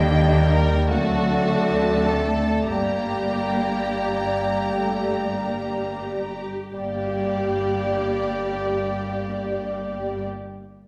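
A wet recital-hall acoustic surrounds this melancholic, elegiac excerpt from a slow romantic orchestral movement in G minor, moving in a rubato 6/8 at 27-40 BPM and slowing over its first 6.7 seconds. A smooth, vibrato-rich violin section carries the melody, while a lush, distant second violin section, a bright clarinet and a mellow, pure small flute group trace second lines. Beneath them, a clear bassoon and an expressive viola section with portamento supply accompaniment, a soft-attacked French horn section holds sustained chords, and warm bowed cello and double bass sections anchor the bass through the Eb, D7 and Gm harmonies.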